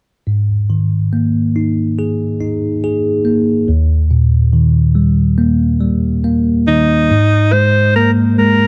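A punchy alto saxophone with vibrato, a smooth top and digital delay enters at 6.7 seconds for a forceful pop-style solo over a clean, bell-like tine electric piano with phaser that plays Absus2 and Eb chords up front from 0.3 seconds, giving this heartfelt, emotional 70 BPM pop passage, cut from a longer piece, a dark, studio-room production.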